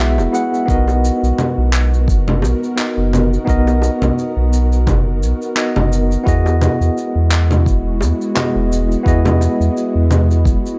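A clean, up-front tine electric piano with delay opens this blissful, relaxed sunset chillout excerpt over an ethereal, airy pad with ensemble chorus in the background, a round sine sub bass and a tape-warm layer of electronic shaker, congas and handclaps; soft, low-tuned bongos join at 0.2 seconds and a deep electronic kick at 0.7 seconds, all riding a lightly swung sixteenth-note feel as the chords move from Emaj9 to Bmaj7 and return to Emaj9 at 6.3 seconds.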